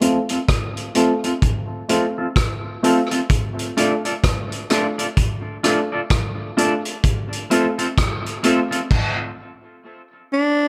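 A growling tenor saxophone, raspy and up front with a light vibrato, sounds a single D4 at 10.3 seconds, alone after a stop that silences the band from 8.9 seconds. Before that, this meditative, hypnotic dub reggae excerpt moves at 64 BPM in 4/4 with a swung sixteenth-note feel, over chords of F, D minor and back to F. An electric guitar at the edge of break-up, twangy and fingered, plays accompaniment while a woody, boxy upright piano adds stabs, both passed through a low-pass filter and tape echo. A vintage drum kit sits forward with a punchy kick, rim click, hi-hat, crash and dark cymbals, its gritty, saturated tone rolled off at the top. A filter sweep runs through the whole passage, and a moderate spring reverb gives the room a lingering tail.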